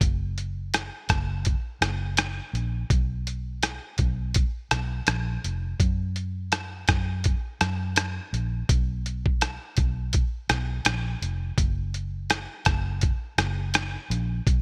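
The sound is dry and close, with little reverb and a bright, 1980s-style digital sheen. This short cut from a longer indie and bedroom pop piece moves at an easy 83 BPM in 4/4 with a light sixteenth-note swing, settling into a laid-back, hazy mood in F# major. A lo-fi, sampler-style drum kit sits up front from 0.0 to 14.6 seconds, its hi-hat, kick drum and rim click sounding compressed, pitched down and muffled, with a thumpy kick and a tape-warm grain. A vintage muted electric bass, played with the fingers, runs alongside for the same span in a low register from F1 to F#2. Its tone is dark, amped and foam-muted, round yet punchy, and it sits close in the mix, a touch beneath the drums.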